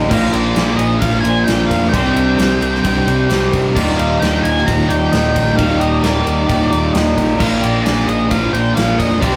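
Shoegaze and dream pop rock, wistful and dreamy, built on a wall of picked guitars: a thick fuzz riff, an overdriven semi-hollow part and a bright, double-tracked cranked stack sit in the background with a twangy, compressed twelve-string weaving clean arpeggios through them. An octave-fuzz lead carries the melody from 0.1 seconds over a round, punchy foam-muted bass, a gated 80s kit with bright cymbals and a tight kick, and a very quiet jingly tambourine, while a deep, detuned ambient pad holds very quiet sustained chords. The rough rehearsal-room recording has wet reverb and warm saturation, and the chords move through Bb7, Csus2 and Ebmaj7 in this short cut from a longer piece.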